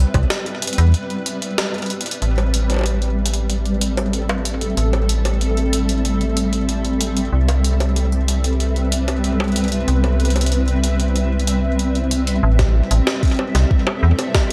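Cerebral and intricate, this short IDM passage, cut from a longer piece, moves at a steady straight pulse in 4/4 under light reverb. A granular cloud pad sits up front for the full length, its detuned, blurred sustained chords evolving slowly through Cmaj7 and Am7 with a built-in reverb and analog chorus lending a mellow, full-bodied haze. Beneath it, a metallic FM bass, also up front, gives digital notes with a fast attack that decay in the low register. A gritty, pitched-up jungle drum kit of bongos, hi-hat and a high-tuned snare runs throughout, compressed and tape-toned, with delay and the air of a large room around it. A soft, overdriven electronic kick drum appears only briefly at the start and falls away after a fraction of a second. It stays silent through a break from 0.9 to 2.2 seconds and the long middle stretch, then returns at 12.6 seconds for the closing moments.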